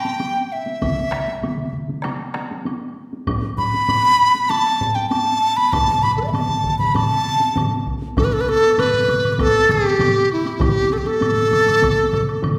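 Bathed in a wet recital-hall reverb, this driving, ceremonial Japanese taiko fragment sets an airy, buzzing large dizi up front, its bamboo tone mellow and expressive with vibrato and soft attacks across E4 to B5, over layered taiko ensembles struck with heavy sticks, a woody woodblock in the background from 0.2 s, and solo taiko drums on hard sticks joining at 3.3 s, before the music moves into a new section at 8.2 s.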